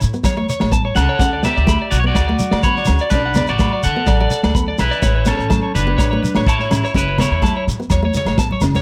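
Highlife guitar band music, carefree and joyful, moves at 126 BPM in a straight 4/4 in D major, cut from a longer piece and settling on A, D6 and back to A. A crunchy breakbeat drum kit, gritty and dark with a tight kick and rolled-off top, anchors the groove beside a thumpy, woody pizzicato upright bass, while bright congas and ringing agogo bells sit in the background alongside a grainy shekere. A fingerpicked nylon-string guitar with old strings adds full-bodied accompaniment, and a twangy, up-front, slightly broken-up electric guitar plays high arpeggios through lush chorus and slapback echo. From 1.0 s a compressed, slightly broken-up electric guitar carries the melody with spring reverb until 7.6 s. A drum fill closes the passage at 7.9 s, all within a light room reverb.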